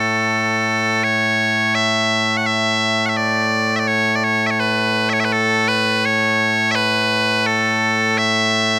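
A lone set of bagpipes sounds from the very start at 0.0 seconds, loud and placed up front, carrying a stirring, proud Scottish traditional tune. The pipes play solo throughout this short excerpt in a straight 4/4 feel at a moderate, steady pace, their continuous tone spanning from a low A2 up to F#5. Their sound is bright and piercing, tuned slightly above standard pitch at A4 = 441 Hz. Recorded outdoors, the performance is dry and open-air, with little reverb and a direct, close presence. Cut from a longer piece, the passage runs to 8.8 seconds as a single unbroken stretch of piping.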